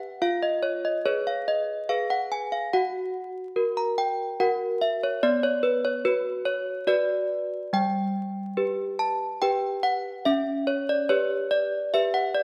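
A classical tune for handbells in B minor, this wintry, solemn fragment moves at a measured 72 BPM in 3/4 and is cut from a longer piece. Desk bells play alone throughout, their clear, ringing tone sitting up front yet slightly clanky and a touch out of tune, spanning G3 to A#5 over chords that pass from Fm7b5 through F#, Bm and G to C#m7b5. A moderate recital hall reverb surrounds them, and a layer of vinyl crackle adds a worn patina.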